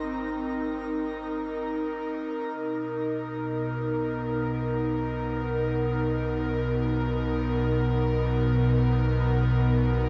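This ambient excerpt in free time opens with an airy, breathy pad holding sustained chords, its detuned, warbling tone given a vintage softness by chorus and a shimmer reverb, and it sits bright and up front from start to finish. Beneath it, a deep, round sine sub bass sustains low notes throughout, fading in from 2.5 seconds to the end at 10.1 seconds. In the background, a twinkling granular texture adds a sparkling, octave-up shimmer on a single high note, heard only until 2.5 seconds. The harmony moves from Cm7/Ab to Bmaj7 at 2.5 seconds, marking the shift into the second section. The dreamy mix is soaked in a moderate plate reverb, leaving a warm, peaceful mood.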